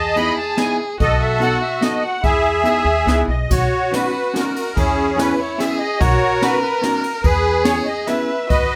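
A charming, whirling musette waltz in a loose rubato three, led by a reedy, shimmering accordion up front, with a smooth bowed violin as the second line, woody pizzicato upright bass, a dark, clean hollow-body electric guitar picking the accompaniment and an airy brushed drum kit with dark cymbals, all captured in a dry, close and detailed short excerpt from a longer piece.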